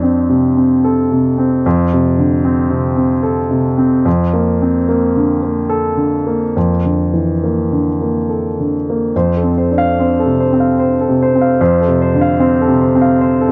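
A dry, close 1970s-style studio sound with light reverb frames a warm, polished baby grand piano, present and up front as it plays solo through this hopeful, peaceful neoclassical minimalist fragment in F major. It moves in a rubato 3/4 at 74 BPM, tuned to A4 = 436 Hz and spanning F2 to F5, resting on F before shifting to Fadd11 at 4.1 seconds and returning to F at 9.1 seconds as its opening passage comes round again until the cut at 13.5 seconds.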